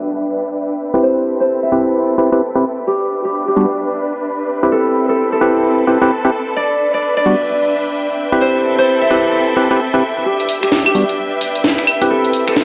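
A bright, ringing Celtic harp opens this moody two-step garage excerpt at 130 BPM in E minor. Its fingerpicked melody passes through a low-pass filter and tape echo, set over an ethereal, airy pad with ensemble chorus and tremolo in the background, and a dark, muted string section bowing con sordino with vibrato. At 0.9 seconds a hollow, percussive organ stab enters up front, its fast-attack, decaying hits coloured by chorus and tape echo. The harmony moves between Em7 and Am7 under a skippy, swung 16th-note feel, while a filter sweep runs through the opening stretch. A build-up begins at 10.3 seconds with filter sweeps on the harp and the stab, and at 10.4 seconds a layered electronic house kit arrives with claves, finger snaps, hi-hat and an overdriven, cracking snare. The mix sits in a lush hall reverb with digital ambience and a low-pass filter.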